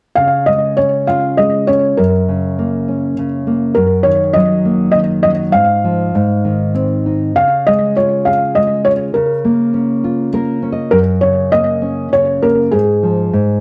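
At 0.2 seconds a felt-muted upright piano and a nylon-string guitar begin together, setting a sleepy, gentle children's lullaby in a lilting triple metre with a freely breathing, rubato feel. The piano carries the melody in a soft, mellow voice, its short sustain and audible action noise lending an intimate, natural character, while a slapback echo trails each note. Beneath it, the thumb-plucked guitar provides accompaniment with a dark, deep classical tone and fresh strings. The harmony moves calmly between major chords and inverted minor chords, and at 10.0 seconds the guitar adds a brief fill. Both instruments sit up front in a dry, close 1970s-style studio sound touched by light reverb, and this fragment of a longer piece ends at 13.6 seconds.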